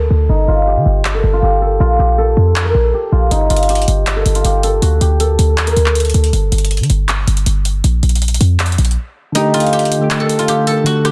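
This eerie, melancholic trap excerpt moves at 159 BPM in a half-time feel in G minor, cut from a longer piece. A silvery, fingerpicked guzheng carries the melody up front from the start, its bright, ringing notes shaped by a low-pass filter and a digital delay, while a punchy, tight 808-style bass with a sine body and a noise layer sits up front beneath it. Electronic trap drums with metallic hi-hats, handclaps and rim clicks arrive at 1.0 seconds during an opening break, and a filter sweep runs through most of the passage over chords moving between G5, Bb5, D5 and an F9/G. The bass drops out at 9.0 seconds, and soft, round electric-piano-like synth keys enter at 9.3 seconds on a Gsus2, mellow and gentle, coloured by chorus, tremolo and a phaser. The mix is dry and dense, with a heavily limited modern master.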